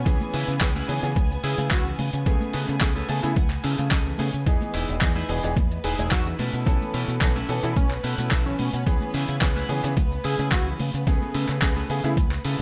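Nu-disco with a sunny, feel-good glow at 109 BPM in straight 4/4, this short excerpt cycles through C#m7, Amaj9/C#, Emaj7 and B9sus4 as a knocking, overdriven electronic kick sits up front beside a gritty, dusty sampler-style kit of handclaps, hi-hat and shaker, a bright fingered bass with an envelope filter and tube saturation, tambourine and congas in the background, a clear baby grand piano with sidechain pumping and digital delay, a picked clean electric guitar riff with subtle chorus and a fill from 2.8 to 4.5 seconds, a sustained, pumping symphonic violin section, and a thick, nasal, detuned unison lead entering at 1.4 seconds, all in a dry sound.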